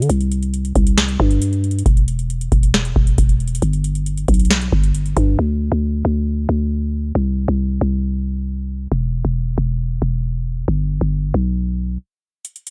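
A dark, brooding trap excerpt at 136 BPM in a half-time feel opens with an overdriven analog drum machine, with its booming deep kick, crisp snare and metallic hats, over a growling, buzzy 808-style bass with a fast attack and decaying tail, both up front in a dry mix, until the drums drop out at 5.4 seconds, leaving the bass alone until a break at 12.0 seconds, after which the drums return briefly at 12.4 seconds with the kick muted.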